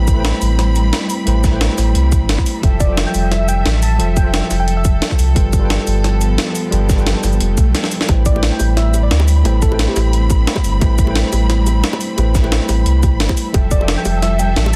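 A deep, round sine sub bass sits up front, anchoring this dreamy, melancholic liquid drum and bass excerpt at 176 BPM in A minor. A worn, slightly out-of-tune tine electric piano, lightly overdriven and treated with delay, plays the accompaniment over Am9, Fmaj9 and G9 chords, while a lush bowed string section with vibrato holds sustained chords under sidechain pumping. A tight, layered electronic kick and a gritty, pitched-up sampler-style breakbeat kit of hi-hat, shaker and high-tuned snare carry the swung 16th-note feel, both set in studio reverb. A gentle, keys-like FM synth lead with chorus and delay adds brief melodic phrases, first appearing at 2.8 seconds. After a short break and drum fill marked by a very quiet electronic swell, close, dry bongos with hard hands enter in the background at 8.1 seconds, and the whole mix is dense and heavily limited, surrounded by digital ambience.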